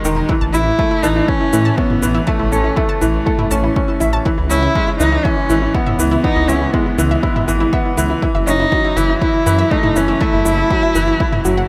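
Opening at once on a bright, woody upright piano riff with audible action noise and digital delay, a dark, rumbling detuned saw bass with sidechain pumping, and overdriven electronic shaker and toms, this hypnotic, moving piano-and-strings electronica cut at 121 BPM in F# dorian soon adds a round, chorused analog pluck playing arpeggios in the background, a punchy layered kick, and from 0.5 s an expressive bowed solo cello with vibrato and portamento up front, all moving through A, C#m7 and F#m7 in light digital ambience.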